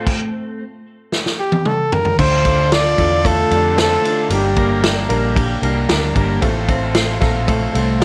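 A close-miked trumpet with vibrato and scooped notes carries the melody up front from 1.4 to 4.8 seconds in this bittersweet, wistful jangly indie pop excerpt, over a bright, twangy twelve-string electric guitar playing chorus-treated arpeggios and a lo-fi, overdriven garage guitar with harmonic tremolo sitting in the background. A vintage drum kit with dark cymbals and a punchy kick plays a fill during the opening stop, and at 2.2 seconds a round, foam-muted electric bass and a woody, slightly detuned upright piano with audible action noise join as the chords move from Dm to Gm to F/A. Light studio reverb gives the recording a gentle sense of space.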